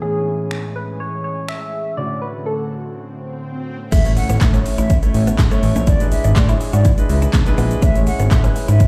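A straight 4/4 deep house kit at 123 BPM enters at 0.5 s, overdriven and up front with a deep kick, punchy snare and metallic hats, driving this summery, carefree dance-pop fragment in A major alongside a polished grand piano, an airy, breathy pad and a round, gentle FM synth lead coloured by chorus, phaser and dub echo. After a short break, a very quiet electronic swell and impact lead into the drop at 3.9 s, where a fat, detuned sawtooth bass, a clean, scooped direct-recorded electric guitar riff and a hollow, mellow silver flute melody with dub echo join in. Sidechain pumping moves the piano, pad and bass, the sound sits in a stone room with light reverb, and the chords pass from C#m/A and Dmaj7/A to A, E7 and C#m.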